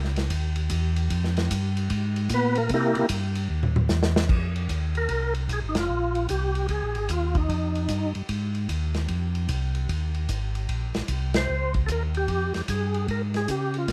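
A fat, percussive tonewheel organ with key click, second-harmonic percussion, chorus vibrato, slow rotary speaker, light overdrive and plate reverb carries the melody in this soulful, smoky soul jazz organ trio in F minor at 150 BPM with a swung 4/4 feel, entering at 2.3 seconds and returning at 11.4 seconds over a mellow, round, dark tonewheel organ bass line with its own slow rotary and chorus vibrato, while an acoustic soul drum kit with dark cymbals and a tight kick adds a fill at 3.5 seconds and band accents punctuate a close, detailed, lightly reverberant excerpt cut from a longer piece.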